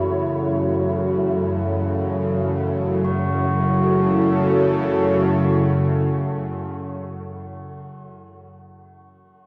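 Steeped in a cathedral-sized reverb with a long 5.9-second decay, this short cut from a longer dark ambient drone piece has a dark, warm production and a dark, desolate mood. It sits in F# minor, in free time, resting on a single F#m chord throughout. Low in the register, a bowed-like drone sits up front with a tense, string-like sawtooth edge, detuned unison layers, ring modulation, vibrato and its own reverb, holding until about 7.4 seconds. Beside it, a deep, full-bodied analog pad with a sub octave and chorus sustains slowly evolving chords until around 7.6 seconds, while a very quiet, breathy, wind-like tuned noise texture drifts between them and falls silent by 3.1 seconds. Soft, mellow tubular bells with a padded hammer ring out solemn arpeggios through tape echo, lingering alone to the close at 9.4 seconds.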